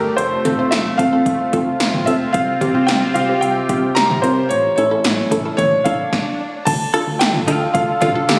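Cool and melancholic, this synth-pop excerpt sets a clear, up-front grand piano melody over a detuned sawtooth unison pluck, a bright, evolving resonant pad with chorus, and a round, dark FM bass. Punchy 80s electronic drums enter at 0.2 seconds with gated snare and toms and metallic hats, a very quiet electronic swell rises at 5.5 seconds, and a clean, direct-recorded electric guitar with spring reverb and delay adds a second line from 6.9 seconds. The whole mix sits in a lush hall reverb and carries the compressed, roomy character of a phone recording.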